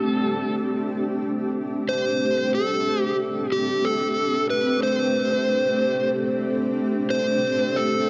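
Deep and meditative, this ambient excerpt moves at 92 BPM in A minor, resting on an Am7 chord with tuning set slightly low at A4 = 435 Hz. A dark, overdriven electric slide guitar carries the melody up front, fingered between G4 and C5 and trailed by dub echo, while a cloudy, detuned granular pad holds slow-attack chords with its own built-in reverb. The pair sit inside a wet scoring-stage space with a 1.9 s decay, giving the short fragment a blurred, evolving depth.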